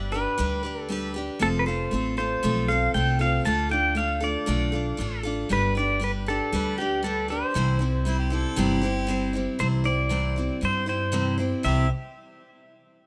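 Sunny and easygoing, this short honky-tonk and classic country fragment moves in a relaxed, straight four-beat stride. A picked steel-string acoustic guitar and a pizzicato upright bass carry the accompaniment from the very start, the guitar bright and up front with an auditorium feel, the bass woody, dark and growly on its steel strings. From 0.1 seconds a clean electric pedal steel guitar takes the melody, played with fingerpicks, compressed and sitting up front, its slide and volume swells gliding over a progression that moves from G through F, Dm and back to G before settling on C. At 8.1 seconds a warm harmonica joins as a second line in a classical style, distant and roomy, sitting lower in the mix. Light reverb and studio ambience give the rough home-demo mix an unpolished, intimate charm.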